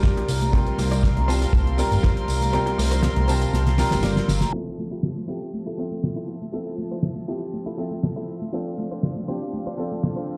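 Nu-disco with a sunny, groovy lilt, this excerpt opens on a clean electric guitar fill and a clear, worn baby grand piano up front, its dub echo trailing over dark, bowed studio strings with sidechain pumping in the background. A dry, tight kick drives the first 2.1 seconds and a fat, saturated sawtooth bass holds the low end until 4.4 seconds, while a damped 70s kit with a fat snare, hi-hat, rim click, tambourine and crash sits beside soft-handed, vintage bongos and congas. After a drum fill and a band accent, a filter sweep runs from 4.5 seconds as the compressed guitar riff carries on with lush chorus and 12-bit grit, the whole mix ringing in a bare stone room through a big sound system.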